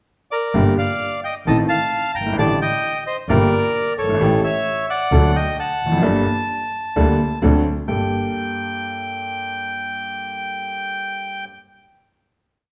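A reedy, close-miked bandoneon opens this dramatic, sultry tango in G minor at 0.3 s, spinning a motif-based melody in period phrases partly doubled in thirds over a bright, woody upright piano and a biting, bowed double bass with vibrato, both marking a marcato tango rhythm in two at a rubato 131 BPM, with the bass dropping out at 8.1 s as the trio, heard live in one room with a large studio reverb, settles on a final Gmadd9 chord.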